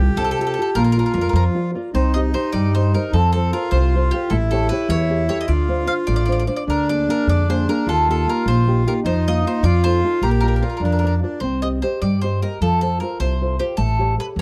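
Italian folk serenade in Bb major, lively and sunny at 102 BPM in a rubato 6/8, with a round, double-strung picked mandolin carrying the melody over a dark, thumb-plucked classical nylon-string guitar, a woody pizzicato upright bass sitting up front, and a reedy, boxy accordion second line that drops out at 11.4 s, the whole heard in a dry, close 1970s-style studio sound as a cut from a longer piece.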